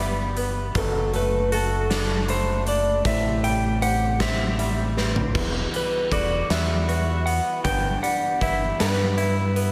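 This cinematic, cathartic post-rock excerpt in 6/8 opens on a very quiet, lush symphonic string section holding bowed chords with vibrato. Alongside it, a soft felt-muted upright piano plays arpeggios in the background with audible action noise, and a twangy, scooped electric guitar plays its own clean arpeggios through slapback echo and analog delay. Underneath, a growling fingered bass sits up front, overdriven and punchy. A big rock drum kit arrives at 0.4 seconds, its kick, medium-tuned snare and crash cymbals ringing in a bright stone room, and at 0.8 seconds a clean, compressed lap steel guitar takes the melody with slide, volume swells and analog delay. The harmony moves from G6 through D/F# and Am7 to Emadd9 and back to G6, with a drum fill at 5.0 seconds leading into the second passage, all set in a lush hall reverb that gives a big arena sound.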